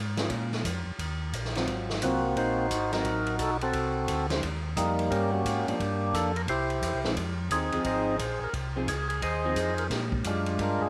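Soul jazz organ trio playing in a greasy, bluesy swing, heard as a short cut from a longer piece. A tonewheel organ carries the bass line from the very start, its piping, scooped tone clean and touched with vibrato through a stationary speaker. At 0.2 seconds a dark, hollow-bodied archtop guitar joins with picked accompaniment, alongside a distant, roomy big-band drum kit whose punchy kick, medium-tuned snare, hi-hat and ride have a rolled-off top. From 2.0 seconds a second, percussive tonewheel organ takes the melody up front, full and clean with key click and second harmonic percussion, turning through a slow rotary speaker. The harmony moves through chords such as Bbm7, Ab13, Adim7, Eb9 and Fm7 before landing on Bb6, all set in light reverb and small room ambience.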